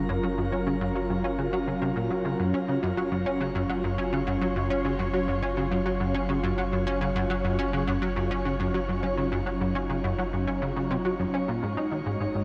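A detuned, airy pad and a punchy, funky analog bass riff open together, both up front, as a round sine sub bass sits low beneath them in this cosmic, expansive piece of ambient, sequencer-driven space music. The pad holds sustained chords with a slow attack, a filter swell and a long release, its sawtooth tone thickened by a noise layer and chorus so that it keeps evolving. The plucky bass riff, built from sawtooth and pulse waves with a fast attack and a decaying filter pluck, is coloured by ensemble chorus and tape echo. From 0.1 seconds a very quiet, breathy, wind-like tuned noise texture drifts high above, dark and sustained with its own reverb. The harmony rests on a Gbmaj7 chord before shifting to Ab7sus4 at 11.6 seconds, and a wet shimmer reverb with a long tail gives the whole space a vast, floating feel in this short cut from a longer piece.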